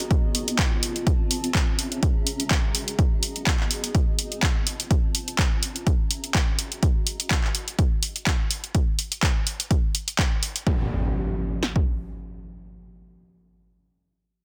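Bittersweet and energetic, this piano house excerpt at 125 BPM pairs a punchy, tape-warm analog drum machine (handclaps and hi-hat to 10.6 seconds, kick and snare to 11.9 seconds) with a cloudy, detuned granular pad whose blurred, mellow haze drifts over F7, A#m7b5, D#m7 and G#madd9 changes and fades out by 6.8 seconds, before an up-front electronic impact lands at 10.7 seconds in a dense, heavily limited, dry mix.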